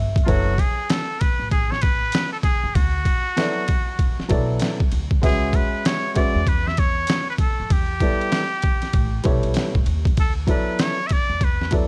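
A dark, warm small-room sound frames this mellow, nocturnal jazz-hop excerpt at 97 BPM in F# minor with a swung 16th feel, where a gritty, pitched-down sampler-style drum kit with a thumpy kick, hi-hat, snare and ride sits up front beneath a nasal, straight-muted trumpet solo full of vibrato and scooped notes, while a woody upright piano accompanies through chords moving from F#m to D69 and a pizzicato upright bass anchors the low end.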